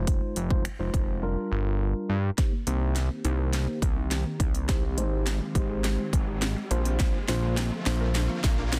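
A straight 4/4 groove at 104 BPM drives this energetic, bittersweet dance-pop clip in C minor, with a punchy, up-front house kit of kick, cracking soft-clipped snare, crisp hats and finger snaps that falls silent from 1.2 to 2.4 seconds before a drum fill carries the build-up. A fat, detuned sawtooth bass pumps under sidechain beneath a mellow tine electric piano heard through a low-pass filter, while a woody, round mallet-like pluck playing arpeggios joins as the build begins at 2.4 seconds, followed by a very quiet glassy FM pad with chorus and phaser at 3.0 seconds. A background riser enters at 4.3 seconds over a filter sweep as the chords move from Cm7 through Abmaj7 to Bbadd9, all in a dry, dense and heavily limited modern master.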